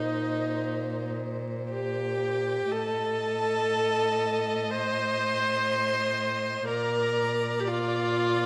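Solemn and melancholic, this fragment of a slow romantic movement for string quartet moves at 60 BPM in 4/4 with a flexible, rubato feel, tuned to A4 = 443 Hz. The first violin carries the melody high in its range with a soft attack, expressive vibrato and gliding portamento, while the second violin sits in the background beneath it with a smooth top and a similarly singing, sliding line. The viola's clear, even accompaniment stands up front as the most prominent voice, and the cello holds a low bass with a gentle attack and its own portamento. All four players bow through the full 8.5 seconds as the harmony moves from Cm7/Bb through Adim to a resting Bb. A moderate scoring-stage reverb, lasting 1.8 seconds, lends the mostly close, intimate playing a sense of space.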